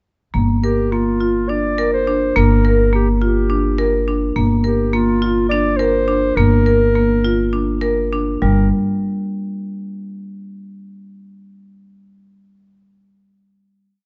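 Straight 7/8 at 209 BPM in eighths drives this short, pensive and hypnotic chamber piece in G minor, where a bright, percussive marimba played with hard mallets sits up front with an arpeggiated ostinato over a woody pizzicato upright bass holding sustained G notes. From 0.6 s a mellow, smooth-topped clarinet adds a classical-style solo built from call-phrase motifs. Light reverb and a dark production frame the trio until all three parts stop at 8.7 s.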